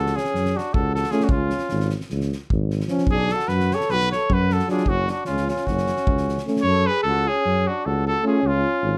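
A clear, up-front trumpet carries the melody over a mellow, up-front tuba bass and a soft-attack flugelhorn second line in this bittersweet, fiery Balkan brass band excerpt in 9/8, joined by bright distant trombone and mellow euphonium accompaniment from 1.1 seconds, and a loose acoustic drum kit with a fat snare and punchy kick that drops out at 6.6 seconds, all in a moderate studio reverb.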